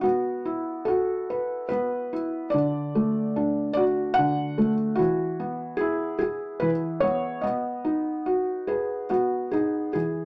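In a rubato 3/4 sway at about 73 BPM, this gentle, tender lullaby fragment from a longer children's piece features a solo felt-muted upright piano, tuned slightly below standard pitch, whose dark, intimate tone sits up front with thick felt and audible action noise in a moderate studio reverb, drifting through Bsus4, D, E and B over roughly 10 seconds.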